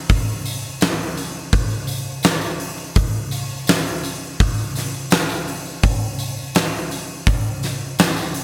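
A straight 4/4 rock groove plays from the huge arena drum kit, its punchy kick, fat snare and hi-hat sitting up front with a big-room acoustic character. A jingly, warm tambourine sits in the background, lending a live-room feel to this dreamy, blissful fragment cut from a longer piece. The mix itself carries little reverb, so the drums land up front.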